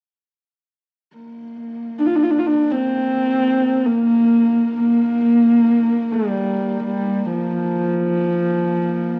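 In free time and a Bb gong mode, this fragment of Mongolian folk music feels proud and vast. A horsehead fiddle holds a husky, close Bb3 drone from 1.2 seconds with light vibrato and a smooth top, and a second bowed fiddle enters at 2.0 seconds to carry an intimate melody between F3 and F4, its airy bow, soft attack and portamento set further back. A wet spring reverb and small-room ambience surround the warm cassette sound of this home recording, which is cut from a longer piece.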